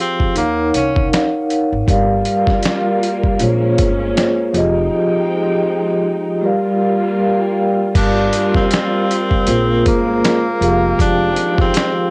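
A relaxed 79 BPM groove in 4/4 with a swung sixteenth-note feel sets this nostalgic, reflective lo-fi hip hop piece in G phrygian, cut from a longer work. A gritty, compressed sampler-style drum kit sits up front, its thumpy kick, medium-tuned snare, hi-hat, finger snaps and crash cymbal colored by cassette tape and the sound of a small room. Underneath, a woody pizzicato upright bass plays through minor seventh chords such as Ebm7, Gm7, Bbm7 and Fm7, while a mellow, dark vibraphone played with soft mallets rings with slow motor vibrato, smooth and up front, filtered to a dim glow and adding a fill at 6.8 seconds. A lush, bowed symphonic string section enters at 1.9 seconds with sustained, expressive chords, its vibrato and portamento softened by a low-pass filter. A clear tenor saxophone with a soft attack and jazz vibrato offers a brief phrase at the start, then returns at 8.0 seconds as a solo voice, treated with tape echo and a cassette haze. 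The whole recording has the intimate character of a home cassette recording with a light touch of reverb.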